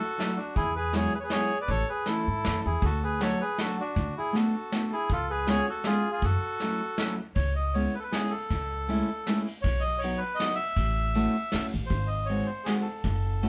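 A brisk 3/4 musette waltz at 159 BPM whirls with nostalgic charm in F# minor before shifting to C# minor at 7.4 seconds, as a reedy bandoneon carries the melody up front over a fingerpicked steel-string acoustic guitar with woody, old-string tone, a thumpy pizzicato upright bass on gut strings, and a vintage drum kit played with brushes and dark cymbals, all captured as a band playing live in one room with moderate studio reverb in this short cut from a longer piece.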